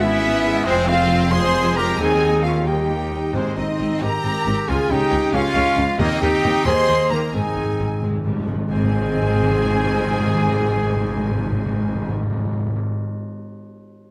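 This heroic, adventurous film-score excerpt in Ab major opens with nearly the full orchestra at once: lush violin sections carry the melody and a second line alongside a hollow flute and a clear clarinet, while mellow French horns sustain chords, a trumpet section adds tight stabs, and a very quiet viola section accompanies. Cellos and a distant double bass section anchor the bass in the background, and a ringing, thumb-plucked concert harp arpeggiates underneath at a stately 90 BPM in 6/8. Close, calf-headed timpani enter at 2.0 seconds and play a fill from 7.3 seconds, all within a moderate scoring-stage reverb.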